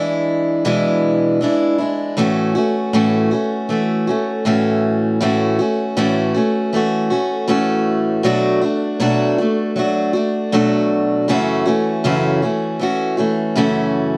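A straight 4/4 pulse at 79 BPM carries this hopeful, emotional pop passage in A major, cut from a longer piece and played by a lone picked steel-string acoustic guitar from 0.0 to 14.2 s. The guitar has a parlour, up-front tone, ranging from F#2 to F#4 as it moves from E7/B through A6, Bm7 and F#m7. The recording has a dry, close 1970s-style studio ambience.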